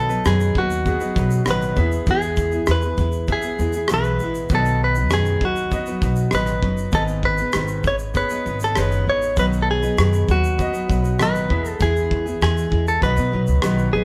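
A clean, picked electric guitar, recorded direct and compressed, carries the melody up front from the first moment. Beneath it sit a fingerpicked nylon-string guitar, full-bodied and deep with audible finger squeak, a polished, brilliant concert grand piano tucked in the background, and a woody, dark pizzicato upright bass. A cloth-damped drum kit enters at 0.1 s with a tight, thuddy kick, rim clicks and shaker, its top end rolled off. This heartfelt, carefree acoustic pop passage moves in a straight 4/4 feel through B, E and G#m, and it is cut from a longer piece. The band plays live together in one room, wrapped in a moderate stone-room reverb.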